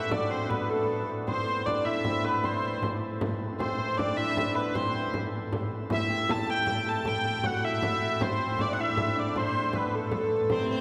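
A nasal, reedy hurdy-gurdy carries the melody up front in this driving, mysterious medieval dance in 6/8 and A dorian, pulsing at 104 BPM in dotted quarters, with a shimmering hammered dulcimer playing a second line and a small, dry frame drum keeping the beat. Beneath them a full, brilliant plenum pipe organ holds a low drone on A2 in the background, and the whole fragment, cut from a longer piece, sits in a cathedral reverb with a 5.1-second tail. A biting, distant fiddle slips in only at 10.5 seconds, touching a high C just before the cut.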